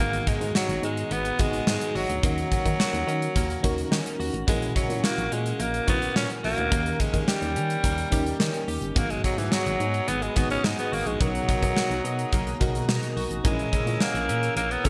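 1980s-style pop in G# minor at 107 BPM, this nostalgic, dramatic passage is cut from a longer piece and moves through a straight 4/4 feel with chords shifting from G#m7 and D#m7 through F#7/A# and D#7, then on to Bmaj7 and A#m7b5. A raspy, gritty alto saxophone carries the melody up front, its bright, punchy pop tone present at the front of the mix. A gated drum kit with a big, airy room sound, a tight kick and a medium-tuned snare drives from 0.1 seconds, while a round, punchy FM bass holds the low end. An FM electric piano with tremolo and phaser supplies the accompaniment, and a clean, compressed twelve-string electric guitar plays a picked riff in the background through analog chorus and delay. At 9.0 seconds a shimmering, detuned pulse-width pad enters with slow-attack sustained chords, and a moderate plate reverb crowns the polished digital production.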